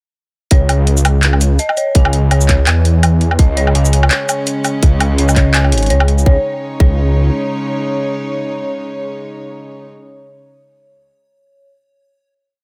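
A sparse, swung half-time drum and bass beat opens the piece at 0.5 seconds, built on a tight, up-front electronic kick and a layered kit of shaker, closed metallic hats, a low woodblock and handclaps that carry a small-room character. Beneath it, a detuned saw bass holds long, rumbling notes, deep and beating, sitting prominently in the mix during the short drop. Above, an eerie, inharmonic FM synth bell repeats a ten-step arpeggio loop that drifts against the bar, its decaying tones colored by chorus, phaser and delay. At 3.4 seconds a chamber string section enters with sustained, bowed chords, gut-string and reedy with light vibrato, roughened by vintage 12-bit sampler grit and pumping from sidechain compression. After the drop the strings carry a final chord while the bell rings on alone to 11.7 seconds, leaving a spacious, dark mood set in digital ambience.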